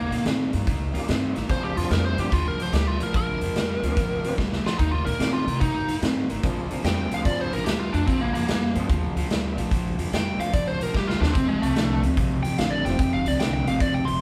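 A gritty, live-in-one-room sound with moderate large-studio reverb frames this laid-back electric blues shuffle, where a biting, overdriven lead guitar solos up front over a dark, hollow-bodied overdriven semi-hollow guitar riff, woody pizzicato upright bass, and a raw, saturated garage drum kit with punchy kick and pumping room tone that drops fills at 4.4 and 10.9 seconds, while a reedy tonewheel organ with slow rotary speaker and key click sits in the background from 0.9 seconds, in a passage cut from a longer piece.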